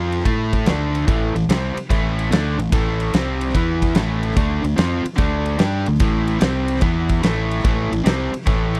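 A dry, close recording in the manner of a 1970s studio, with little reverb, captures this short blues rock and southern rock excerpt, cut from a longer piece. An overdriven, double-tracked electric guitar sits up front, picking a dark, compressed riff that moves through A5, D5, C5 and E5 power chords. Beneath it, a fingered electric bass with fuzz and overdrive adds a growly, amped low end. A big acoustic rock kit comes in at 0.1 seconds, its fat snare, punchy kick and ride cymbal carrying a smooth, big-room tone. The swung eighth-note feel gives the trio a swaggering, driving character from start to finish.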